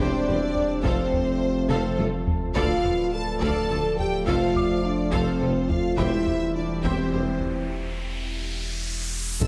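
Tense and brooding, this excerpt from a cinematic hybrid orchestral and electronic film score moves at a slow 70 BPM in a straight 6/8 feel, tuned slightly high to A4 = 441 Hz. A dark, distant French horn section carries the sustained chords most prominently, joined by a close-miked trombone section, a glassy FM pad that enters at 0.1 seconds with ensemble chorus and an ethereal reverb of its own, and a lush viola section in the background. Above them, a focused studio violin section sings the melody with vibrato while an intense, far-off symphonic violin section traces a second line. The low end is deep and layered: a punchy sine sub bass with a pitch-drop attack, an expressive chamber cello section, a very quiet symphonic double bass section and a solo tuba with a smooth top. A soft, felt-muted upright piano adds intimate texture until 7.7 seconds, and a taiko ensemble struck with heavy sticks enters at 0.6 seconds, playing fills around 1.7 seconds and again near the end. 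The harmony moves through C/E, F and Dm before dropping out into a break at 7.7 seconds, while an electronic riser and impact, starting at 7.2 seconds, build toward the close, all held inside a wet concert hall reverb.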